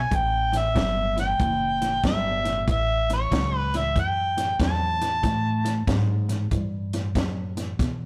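Gritty and rollicking, this short cut from a longer electric blues shuffle swings along in 4/4. An overdriven, amplified harmonica sits up front with the lead melody. Its jazz-style solo is full of scooped notes, tongue slaps, light vibrato and a soft attack, until it drops out at 5.9 seconds. Behind it, a twangy electric guitar at the edge of break-up picks a compressed riff in the background, while a woody pizzicato upright bass on steel strings holds down the low end. A compact cocktail drum kit, also up front, supplies hi-hat, a tight kick and a high-tuned snare, with a dark, rolled-off top from a small room. The harmony moves from A7 to A5, and the take carries the rough, tube-saturated feel of a rehearsal room with light reverb.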